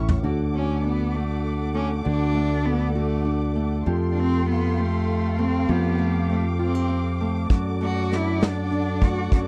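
A brief brushed drum fill opens this tender, swaying six-eight pop ballad at 66 BPM, as fingerpicked nylon-string guitar, a round, punchy fingered electric bass and a dark, lush bowed string section settle beneath a nasal, boxy solo cello melody with vibrato and slapback echo that enters at 0.6 seconds, the harmony moving from D through Fadd9 to D/F#, while the soft brush kit returns at 7.5 seconds in a dry, close 1970s-style studio sound.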